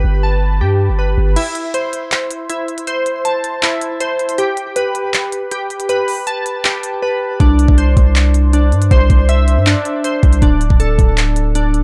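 Brooding and eerie, this half-time trap excerpt in A minor at 159 BPM opens with glassy, detuned digital keys arpeggiating through chorus, low-pass filtering and digital delay over a deep, sine-like 808-style bass, before a crisp, tape-warm trap kit of knocking kick, hi-hats, handclaps and crash cymbal enters at 1.4 seconds for a break where the bass drops out, falling briefly silent at 7.0 seconds until the bass returns at 7.4 seconds, all set in a dark digital ambience.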